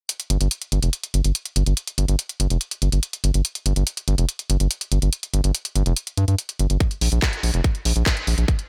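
A round, deep analog bass with tube saturation and a wave-folded, evolving tone sits up front in this intense, hypnotic psychedelic trance fragment, over a layered garage drum kit of handclaps and warm hi-hats, with a tight electronic kick joining at 6.8 s in a dry, close-sounding mix.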